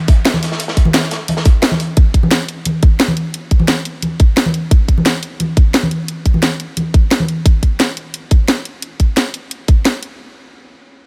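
A straight 4/4 drum and bass groove, uplifting and lush, opens with a gritty, saturated breakbeat kit of hi-hat and medium-tuned snare that is mid-forward with a rolled-off top and drops out at 1.9 s, while a tight, up-front electronic kick and a layered garage kit with a cracking snare drive the whole cut, and compressed, warm acoustic congas enter at 0.3 s and stop at 7.3 s, set in a studio reverb.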